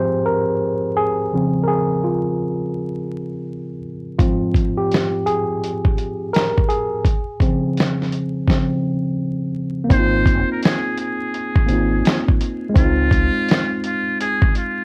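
The recording has a worn, warbling cassette quality, with vinyl crackle, wavering pitch drift and a light reverb, giving this lo-fi hip hop fragment a nostalgic, dreamy haze. A mellow tine electric piano, slightly out of tune and softened by a low-pass filter, opens the piece and sways between Ab6 and Dbmaj7 chords. At 4.2 seconds a dusty, sampler-style drum kit arrives up front, with a thumpy kick, a medium-tuned snare and hi-hat, all gritty and overdriven, as though re-recorded in a small room, and its sixteenth-note swing gives a lazy feel. At 9.9 seconds a trumpet with a metal mute takes the melody, sounding thin, buzzy and breathy with a soft attack and light jazz vibrato. A deep, round, dark dub bass, fingered and carrying transformer saturation, joins at the same moment and drops out at 13.3 seconds, while the piano, drums and trumpet carry on to the cut.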